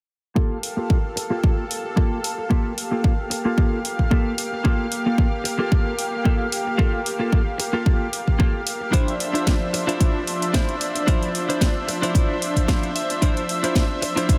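A punchy, tape-warm electronic kick sits up front at 112 BPM in a swung 4/4 groove, joined at 0.6 s by a house kit with hi-hat and a cracking snare, driving this cosmic, sensual nu-disco excerpt in G dorian. A thick, airy pad of detuned sawtooth and square waves holds sustained chords from Gm9 to Dm9, with chorus and sidechain pumping. A clean, picked electric guitar plays a compressed riff through lush chorus, a filter sweep and diffuse ambient delay, adds a short fill at 12.4 s, and sits with the rest in a dreamy mix soaked in huge 8.8-second reverb.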